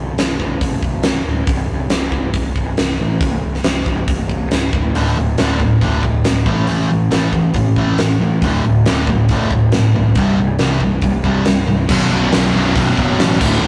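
A growly, fuzz-soaked fingered bass opens this driving, menacing hard rock excerpt in B phrygian at 138 BPM in 4/4, joined almost at once by a huge, up-front arena drum kit with a fat snare, punchy kick and bright cymbals. A dark, sludgy overdriven guitar then takes up the riff at 4.9 seconds, with a biting picked guitar following a moment later, over D5, A5 and C5 chords. A double-tracked sludgy guitar slips in behind them at 11.9 seconds as the harmony returns to Bm, the whole heard through a rough rehearsal-room sound with moderate reverb and saturated tone.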